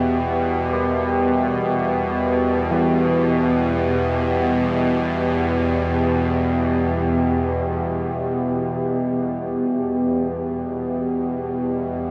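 Ominous and unsettling, this dark ambient drone excerpt floats in free time, anchored by a tense, nasal bowed-like drone that sits up front with a string-like, evolving sawtooth tone, vibrato and its own built-in reverb. Alongside it, a deep, moody analog pad holds sustained chords with detuned sawtooth and sub-octave weight, softened by chorus. From 0.7 to 8.7 seconds, bronze carillon bells ring out soft arpeggios in the background, trailed by dub echo, all set in a wet spring reverb and an echo-heavy mix.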